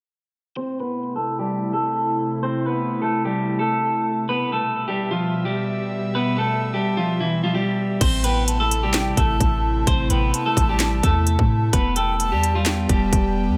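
A half-time trap groove in 4/4 carries this melancholic, menacing hip hop excerpt, which opens at 0.6 seconds with an up-front, dark, picked clean electric guitar melody colored by spring reverb and delay, over a soft, breathy, detuned pad with slow-blooming chorused chords while a filter sweep runs through the opening. At 8.0 seconds a clean, boomy, deep 808-style bass and an electronic trap kit arrive together, the kit built from a hard-clipped kick, sharp snare, crisp hi-hats, handclaps and crash cymbal. Just after, a straight-toned, close-miked concert flute with delay sits in the background as a high second line. Everything rests in light reverb and digital ambience.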